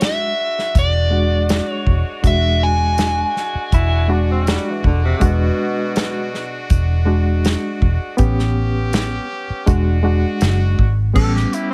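An overdriven slide guitar carries the melody up front through the first 4.1 seconds of this rollicking, soulful straight-eighth soul blues at 81 BPM in 4/4, moving between E9 and A9 chords. A barky, reedy electric piano with light overdrive and fast tremolo plays accompaniment over a bright, loose horn section holding sustained chords, while a tight, roomy soul drum kit with a medium-tuned snare and a dark, round, foam-muted electric bass, entering at 0.8 seconds, sit close in the mix. A mellow, subtone tenor saxophone adds a distant, jazz-style second line with scooped notes from 3.7 to 6.7 seconds, returning briefly at 11.2 seconds, and the whole excerpt is set in a small room ambience.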